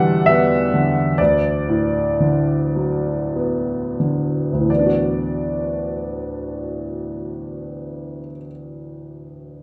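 A clear baby grand piano opens on an Em7 chord, settling onto D6 at 1.2 seconds in this short, peaceful fragment of a longer classical piece in D major. The playing is lyrical and rubato in a slow 6/8, moving at roughly 28 to 46 beats per minute in dotted quarters, and it slows down through the opening phrase. At 4.7 seconds a new section begins on a D69 chord, carrying the same calm mood, with the piano ranging from D2 up to F#5. The instrument sits up front with a worn yet open character and long sustain. A moderate recital hall reverb surrounds it, and the overall production leans dark and warm.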